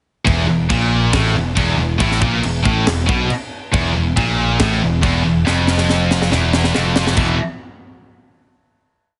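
Dry, heavily compressed and radio-like in sound, this short, driving hard rock piece stacks two scooped high-gain guitars and a double-tracked heavy high-gain guitar on a single-note riff in the background, while a growly, direct picked electric bass doubles the riff in driving eighth notes and an up-front metal drum kit with a high-tuned snare, tight kick and bright cymbals plays a half big groove, breaking into a fill at 5.5 seconds before everything settles on a final chord at 7.2 seconds.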